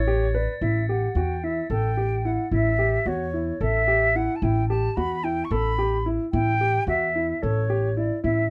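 Lightly reverberant, this restless, shimmering fragment of contemporary chamber music in 7/8 opens with a faint ring of bell-like crotales that stops by 0.5 seconds, while an airy concert flute sings an expressive melody with vibrato over a polished grand piano's arpeggios and a woody, dark pizzicato upright bass.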